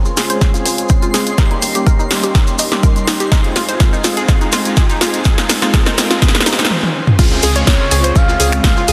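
Progressive house at 124 BPM, bittersweet and dreamy, this excerpt builds over Dbmaj7, Eb7 and Fm7 as a lush, very quiet pad, a filter-swept soft supersaw with sidechain pumping and tape echo, a tight sequencer bass, a bright chorused analog pluck arpeggio, a twinkling granular texture, grainy maracas and a drum fill on a punchy big-room kit behind an up-front, tape-warm kick. Quiet risers and swells join from 3.0 s, and at the drop at 7.2 s a crunchy, gritty breakbeat kit slips in underneath. At 7.7 s a smooth, expressive synth lead with vibrato sings over the returning Dbmaj7, all set in a moderate hall reverb within a dense, heavily limited master.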